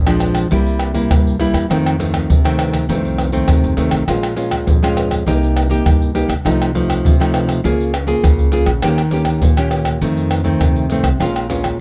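Samba and choro in Bb minor at 101 BPM, this bittersweet, nostalgic excerpt sets a warm, fingerpicked nylon-string guitar up front over a woody, dark pizzicato upright bass and a close, soft-handed kit of egg shaker, pandeiro, tamborim and tight surdo, all in moderate studio reverb as the chords move from Bb7 through Cm7 and Eb7 to settle on Bbm7.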